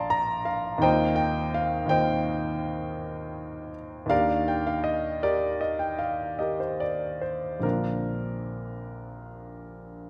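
Impressionist classical solo piano, this short fragment cut from a longer piece has a hazy, luminous mood. It moves slowly in 9/8, around 47-57 beats per minute counted in dotted quarters, with a free, rubato feel. A grand piano plays alone for the full 10.1 seconds, spanning from a deep Bb1 up to D6. Its tone is clear, polished and intimate, sitting up front with long sustain and the audible noise of its action. The harmony drifts from Bb to Eb69 at 0.8 seconds, settles on Ebmaj7 at 4.1 seconds, and comes to rest on Bbadd9 at 7.6 seconds. A moderate concert hall reverb surrounds the instrument, giving the sustained chords a spacious glow.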